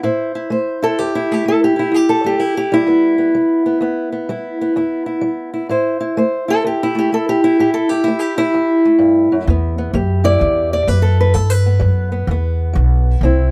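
A fingerpicked old ladder-braced acoustic guitar opens alone, carrying the melody up front with a dark, boxy tone from old strings and a touch of plate reverb. This is acoustic country blues in E minor, brooding and mournful, moving at 127 BPM in 4/4 with a swung eighth-note feel. The harmony shifts from Am to Em, back to Am, then settles on Em. At 9.5 seconds an upright bass joins, played pizzicato on steel strings with a growly, woody character, sitting up front beneath the guitar. The pair is set in light reverb, and the passage is cut from a longer piece, ending at 13.5 seconds.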